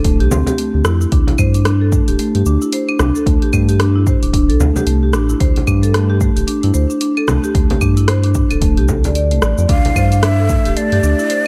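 Organic downtempo in D minor at 112 BPM, this hypnotic excerpt rides a swung sixteenth-note groove, with woody marimba arpeggios carrying tape echo over a round, dark analog bass that pumps and saturates alongside a punchy electronic kick. A produced deep house kit of claves, hi-hat, rim click and shaker sits low in the mix, while a deep frame drum played with soft hands joins at 0.3 seconds and drops out at 9.9 seconds. At 9.7 seconds a breathy, up-front ney enters with vibrato and an unsteady tone for the closing moments, all within light reverb and over a single D7(no3) chord.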